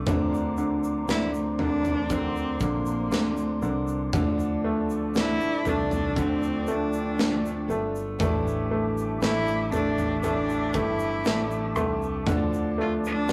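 Heartbroken and emotional, this slow pop ballad in D minor moves at 59 BPM, cut from a longer piece, with a rich, expressive solo cello entering at 1.1 seconds to carry the melody up front with vibrato, portamento and a soft bowed attack. Beneath it, a bright, brilliant grand piano with short sustain plays the accompaniment, a round, dark fingered electric bass and a punchy studio drum kit with a rolled-off top hold the low end, and a full-bodied steel-string acoustic guitar picks arpeggios in the background. An airy large flute ensemble sustains chords and a grainy, close tube shaker ticks quietly behind, all set in a rough rehearsal-room sound with a small, wet reverb and warm saturation.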